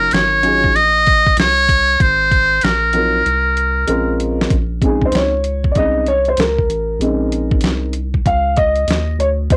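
Cool and nocturnal, this jazz-hop cut, taken from a longer piece, moves at 96 BPM in 4/4 with a 63% swing on the sixteenths, set in Bb minor and tuned slightly flat of standard pitch. A trumpet with a metal mute carries the melody up front for the opening 4.2 seconds, its buzzy, thin tone touched with light vibrato and a smooth top. Beneath it, a dark, mellow grand piano with a boxy character plays accompaniment across Ebm9/Gb and Ab13 chords, while a round analog bass sits deep and sustained in the low register. The boom bap sampler-style drums enter at 0.1 seconds, compressed and pitched down, with a thumpy kick, a medium-tuned snare and hi-hat. They roll through a fill as the harmony shifts to Bbm9, before the piano takes a solo from 4.5 seconds over Bbm11 harmony. The trumpet, piano and drums carry the character of a home cassette recording, and the room stays dry with little reverb.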